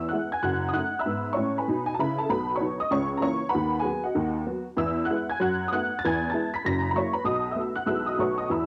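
A swinging 4/4 stride groove drives this exuberant, playful jazz excerpt, carried entirely by a solo honky-tonk upright piano whose detuned, jangly, woody tone sits up front and spans the keyboard from deep bass to high treble. Diminished passing chords lead through the progression to a closing turnaround of F#7 and B7 chords near 6.6 seconds. The piano is set in moderate spring reverb and a small room ambience, with the vintage color of a home cassette recording.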